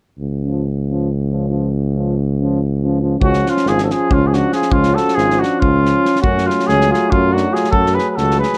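A cornet carries the melody in this Balkan brass band fragment, sitting up front with light vibrato and a distant, roomy tone set in plate reverb, its classical-style line sounding virtuosic yet bittersweet over a straight 7/8 pulse. The piece opens at 0.2 seconds with a warm, up-front tuba on the bass, joined almost at once by a dark, smooth-topped euphonium with its own light vibrato and a clear, present trombone, both filling in the accompaniment from the background. At 3.2 seconds a new section begins, bringing in the cornet together with a mellow, close-miked flugelhorn playing a second line in the background. A loose acoustic drum kit enters at that point as well, with a tight kick and a medium-tuned snare heard in a small room. The harmony holds on C# before moving to F# minor at 6.2 seconds. Light reverb and a dark overall production tint this short cut from a longer piece.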